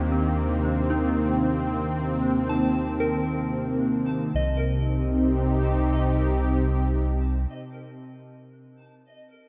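Ambient piece at a slow 57 BPM in C dorian, serene and spacious, shifting from Ebmaj7 to Cm at 4.3 seconds in this short cut from a longer work. A smooth, detuned analog pad holds sustained chords up front with chorus, a round, deep analog bass anchors the low end until 7.5 seconds, and a pure FM bell traces arpeggios through chorus, phaser and diffuse ambient delay, lingering alone until 9.5 seconds. Behind them, a tense, string-like drone with vibrato and its own reverb hums in the background, and the whole dreamy mix is soaked in a lush hall reverb.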